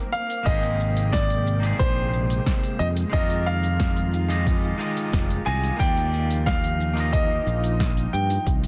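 Sunset chillout with a wistful, relaxed mood, heard as a short cut from a longer piece in a straight four-four feel. A brilliant grand piano carries the melody with audible action noise and long sustain, its intimate, polished tone set off by digital delay, while an electric guitar at the edge of break-up adds twangy, picked accompaniment with tape echo. Behind them a soft string machine holds silky, warbling sustained chords with ensemble chorus, sitting in the background with a slow attack and long release. A deep house drum kit enters at 0.1 seconds with hi-hat, shaker and a punchy, overdriven snare, and at 0.5 seconds an electronic kick with a deep, layered thump joins alongside a bright fingered electric bass that sits direct and up front. The harmony moves through Abmaj9, Fm9 and Ebmaj9 under light reverb and digital ambience, and the whole is finished with a dense, heavily limited modern master.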